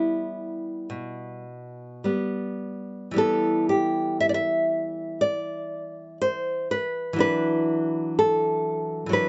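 Romantic solo classical guitar in E minor, tender and warm, drifts with rubato at a slow 50-63 BPM in 4/4, the fingerpicked nylon-string guitar sitting up front with audible finger squeak and light reverb, resting on E minor before shifting to B minor over E at 7.2 seconds in this short excerpt cut from a longer piece.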